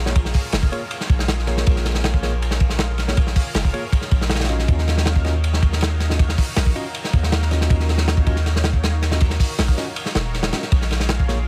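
Dark and frenetic, this drum and bass cut with a jungle edge runs at 159 BPM in 4/4 with a straight feel, sitting in Bb minor and moving from Bbm7 to Ebm9 at 4.7 seconds before returning to Bbm7 at 10.7 seconds. A crunchy breakbeat kit sits up front, its acoustic studio-room sound saturated and gritty, with a tight kick, a medium-tuned snare, dark cymbals across hi-hat and ride, and a rolled-off top. Beneath it a long, sustained 808-style bass, deep and sine-like with a fast attack and a mellow decay, holds the low end from the start. A lush unison pad of thick, detuned sawtooth and square waves with a sub octave swells in slowly and sustains chords, bright and coloured by chorus and phaser. In the background, a worn, slightly out-of-tune tine electric piano plays stabs, its clean, direct tone roughened by vintage 12-bit sampler grit and trailed by dub echo. The mix is dry, and this brief passage is cut from a longer piece.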